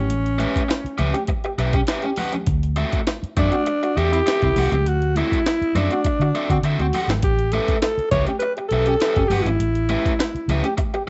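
A breathy, raspy alto saxophone leads this funky, playful section of a longer piece, its vibrato-laced melody sitting up front with a smooth top. A mellow, close-miked trombone, also with vibrato, carries a jazz-style second line lower in the mix. Underneath, a dark, foam-muted fingered electric bass gives a round, punchy bottom, while a compressed, pitched-up sampler-style drum kit brings a thumpy kick, a medium-tuned snare and hi-hat, with a drum fill at 6.6 seconds. A biting overdriven guitar picks out the accompaniment, and high-tuned, thick-skinned congas sit in the background in a live room. The harmony moves from A9 to D9 at 2.5 seconds and back to A9 at 7.2 seconds, within light studio reverb and a rolled-off top end.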